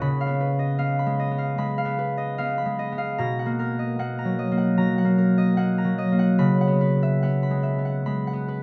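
Classical solo concert harp, serene and peaceful, heard in a brief 8.6-second excerpt at a rubato 69-79 BPM in 4/4, its bright, ringing, thumb-plucked tone sitting up front in light reverb as it spans B2 to C#6 over C#9, Bmaj7 and C#m11 chords.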